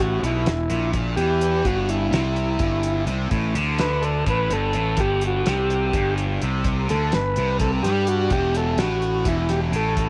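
Hypnotic and mysterious, this psychedelic rock excerpt moves in a straight 7/8 at 252 eighth-note beats per minute, shifting from E minor to G5 before the harmony drops out at 8.3 seconds. A reedy, overdriven combo organ with light vibrato and tape echo takes a solo across the whole passage, over a bright, double-tracked guitar riff colored by phaser and a round, punchy fuzz bass sitting up front. From 0.2 seconds, a cloth-damped, thuddy drum kit with a fat snare and tight kick adds gritty sampler saturation and a rolled-off top, all set in a small, lightly reverberant room.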